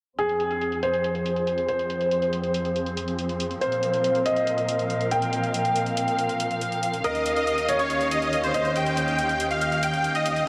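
This euphoric, emotional uplifting trance passage in F minor, cut from a longer piece, opens at 0.2 s with a polished grand piano playing a second line in its upper register, a lush bowed string section holding sustained chords, and a soft electronic hi-hat. The piano sounds present, with long sustain and a diffuse ambient delay. The strings are close and focused, with ensemble vibrato, and a filter sweep runs across them throughout. The analog-toned hats sit low in the mix, as if re-recorded in a small room and darkened by low-pass filtering. At a straight 140 BPM in 4/4, the harmony moves from Fm to Bbsus2 and then to Eb7. At 7.0 s a huge, thick, detuned supersaw lead arrives up front, compressed and carrying vibrato, with a sub octave, vintage 12-bit grit and tape echo, and the whole dreamy mix is soaked in a four-second reverb tail.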